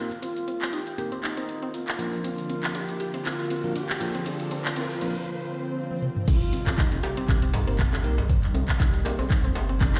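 Afro house with a hypnotic, driving feel, this excerpt opens with an airy, bamboo-toned bass bansuri melody over a smooth, detuned, warbling analog pad and bright, bell-like tine electric piano stabs (both under a filter sweep through the build-up), plus woody, phased mallet-like synth pluck arpeggios and an afro-pop drum kit with metallic hats, handclaps, toms and crash cymbal, as a background riser and swell lead to the drop at 6.3 s, where an impact lands, a deep layered electronic kick and a saturated djembe join, and a round sine sub bass enters at 7.3 s, all set in a light stone-room reverb.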